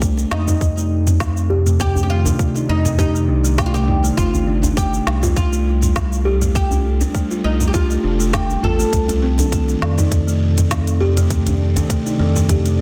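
Over a 4/4 groove at 101 BPM with a light 16th-note swing, an electronic kick drum gives a tight, tape-warmed pulse while an organic electronic kit adds a woody snare, crisp hi-hats, cabasa and toms, and a deep, very quiet djembe joins from 0.2 seconds. This short slice of organic downtempo in C dorian feels mystical, moving from Cm69 to Gsus2 and back. A round, mellow analog bass sits up front with sidechain pumping, beneath a buzzing kalimba whose plucked, ringing arpeggios pass through a low-pass filter sweep and digital delay. An ethereal pad holds sustained chords in the background, coloured by ensemble chorus, phaser, built-in reverb and sidechain pumping. A bright, plectrum-plucked oud carries the melody with digital delay until 8.9 seconds, after which muted, felt-like synth keys enter at 9.4 seconds with a dark, intimate tone, chorus and delay. The whole sits in light reverb with a dense, heavily limited modern master.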